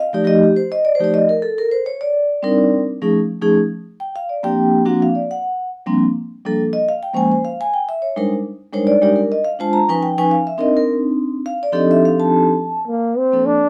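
Jazz with a playful, sophisticated swing feel, this brief excerpt opens on a soft-mallet vibraphone comping through rich, extended, altered chords, its ringing, metallic tone shimmering with a slow motor vibrato. At 12.9 seconds a breathy, whispered trombone slips in with an intimate solo line carrying a light vibrato, briefly overlapping the vibraphone before it stops at 13.4 seconds. Close, detailed microphones and a light reverb keep the sound up front and airy.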